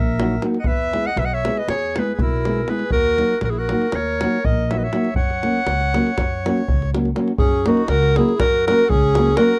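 A dry, close, 1970s-style studio sound with a small room's reverb frames this festive, exuberant Balkan wedding-band fragment in 9/8 at 241 BPM in F# mixolydian, where a bright, up-front classical clarinet carries the melody over a reedy, hollow accordion second line, a dark, fingerpicked nylon-string guitar with audible finger squeak, a growly, woody pizzicato upright bass and a deep, saturated davul, as the harmony moves through D#m, E and F# and a new section arrives at 7.4 seconds.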